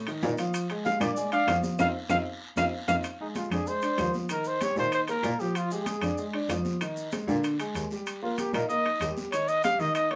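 A clear, deep-bodied grand piano opens this sunny, danceable Afro-Cuban jazz passage, joined almost at once by ringing metal-shell timbales, high-tuned congas set in the background, grainy maracas, a raspy guiro and woody claves, with a distant bowed cello adding a dark vibrato bass line underneath. At 0.8 seconds a breathy, up-front trumpet enters in a jazz style, scooping into its notes with light vibrato and a touch of plate reverb. The band hits an accent at 1.8 seconds and a drum fill follows at 2.4 seconds before the groove moves into a new section.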